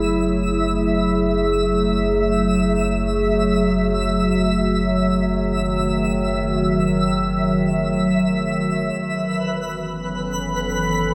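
A warbly, nostalgic tape-like pad holds a sustained F#m9 chord up front in free time, over a deep, round sub bass and a twinkling granular texture with sparkling octave-up shimmer, while a detuned analog drone with chorus joins in the background at 2.1 seconds, all bathed in a wet echo-chamber reverb in this reflective, serene ambient excerpt in F# dorian.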